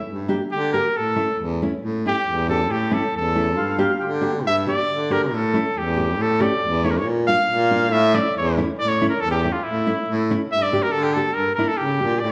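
Bathed in a lush large-room reverb, this festive, soulful klezmer excerpt sounds like a band playing live together at 138 BPM in a straight 2/4, rooted in A phrygian dominant. A clear cornet carries the melody with vibrato and an up-front, pop-style delivery, stepping into a solo from 1.8 to 8.8 seconds. Beneath it, a dark baritone saxophone with a soft attack and light vibrato holds down the bass line, a thumb-plucked nylon-string guitar supplies classical-style accompaniment, and a reedy accordion adds a brief second line at 3.6 seconds.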